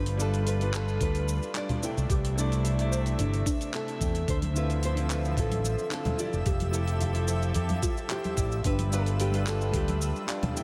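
Sunset chillout at 110 BPM with a sunny, smooth mood, where a bright, fingerpicked nylon-string guitar melody floats over a clear, intimate grand piano with audible action noise, both trailed by diffuse ambient delay, while a bowed string section with gut-string tone and light vibrato holds chords through G7, C69, Dm9 and Fmaj9, a very quiet detuned synth pluck ripples arpeggios, a dark, punchy fretless bass with tube saturation sits up front, a gritty, tape-warm sampler-style kit of handclaps, hi-hat and shaker rides with a thumpy electronic kick from 1.0 s, soft-handed congas enter at 4.4 s, and a twinkling granular shimmer glints in the background from 4.8 s, all bathed in a dreamy cathedral reverb.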